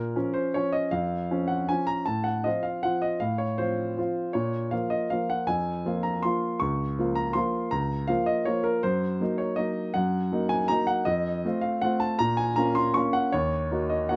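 A classical piano waltz in Bb minor at 160 BPM, elegant and wistful, this excerpt of a longer piece features a solo grand piano with a smooth, vintage, up-front tone ranging from Db2 to Db6, played with rubato and uneven beats in 3/4 under light reverb, moving from Bbm through F/A and Ebm/Gb to F before returning to Bbm and closing on Ebm at 13.3 seconds.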